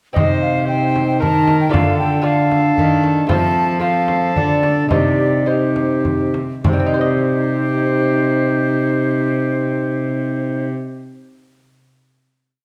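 Heard in a wet recital hall, this short, solemn and rustic renaissance-style consort dance in 3/4 at 100-116 BPM in C dorian sets an airy baroque flute with vibrato on the tune over a reedy, gut-strung viola and a mellow trombone that both play chords in the rhythm of the melody. A dark cello sits up front with a sustained bass, a delicate fingerpicked lute rolls double-strung chords in the background, and a deep frame drum beats a dance rhythm until 6.9 seconds. The consort slows from 2.5 seconds and settles on a held final chord from 6.7 seconds.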